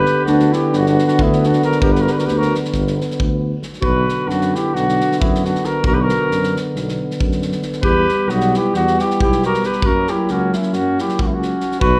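Balkan brass band folk in a fast 9/8 at 269 BPM, bittersweet and fiery, in F# phrygian dominant, where an up-front, punchy flugelhorn carries the melody over a present clarinet second line, a soft-attack tuba bass, a dark, smooth-topped euphonium and a vintage, lightly vibrato French horn in the background, and a loose acoustic drum kit with a tight kick and medium-tuned snare, all set in a roomy scoring-stage reverb as the chords move from G through Bm and Em to F#.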